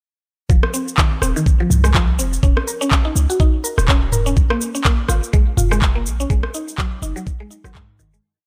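Afro house with a hypnotic, warm pull, built as a short drop that runs from 0.5 s and fades out from 5.7 s to its end at 8.2 s, over chords moving from F5 through Eb7 and Bb7 to Ab5. An up-front, knocking electronic kick drives a four-on-the-floor pulse until 7.9 s, joined by a programmed afro-pop kit of cabasa, rim, low tom and handclaps, both heard in a large room, while a deep, boomy 808-style sine bass plays a dub-style line with sidechain pumping. Above them, a woody, mallet-like FM pluck with a bright edge cycles a 12-step arpeggio loop that drifts against the bar, dressed in lush chorus, tape echo and pumping, in an otherwise dry mix.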